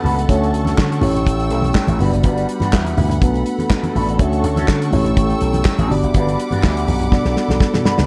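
A dark, warm production with light reverb frames this short disco cut, taken from a longer piece, moving at 123 BPM in a straight 4/4 in D major with a joyful, glamorous mood. A damped 70s drum kit sits up front, dry and acoustic, with a tight kick, a medium-tuned snare, hi-hat and handclaps, and it closes on a drum fill from 7.1 to 8.1 seconds. Alongside it, an up-front slap bass, bright and amped through an envelope filter, drives the low end, while very quiet, low-tuned congas with a thick skin add soft-handed percussion. A mellow tine electric piano opens with a fill and keeps comping, while a picked, clean electric guitar coloured by wah and lush chorus plays alongside it from the start. A rich, close studio string section holds smooth, bowed chords with vibrato over a looping progression of Dmaj7, A7, Gmaj7 and Bm7.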